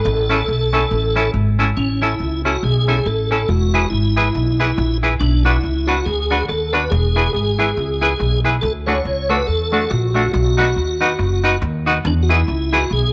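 Ska at 140 BPM in A major with a bouncy, joyful swing, this short excerpt sets a piping, lightly overdriven tonewheel organ melody with key click, chorus vibrato and a slow rotary speaker over a woody, dark upright bass played pizzicato and up front, while a clean, picked semi-hollow electric guitar with tube saturation, tremolo and tape echo accompanies from 0.3 seconds, all framed by moderate spring reverb in a small room as the chords move from A through E, Bm, D and B.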